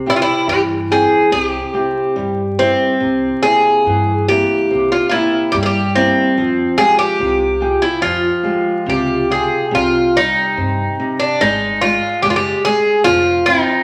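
A large, reverberant studio space and a faint vinyl crackle frame this short excerpt from a longer fado-style ballad, full of longing and mourning. The music moves in a loose, rubato two-beat feel. Up front, an Irish bouzouki carries the melody in a narrow mid-register line, its picked double strings giving a warm, metallic ring. Beneath it, a fingerpicked flamenco guitar spans a broader range in warm accompaniment, while a pizzicato upright bass on gut strings enters at 0.5 seconds with a woody, dark, thumpy low end. The harmony moves from C through C7 to Fmadd9, then shifts at 9.7 seconds as a new section passes through Cm and Fm9 before settling on a bare F5.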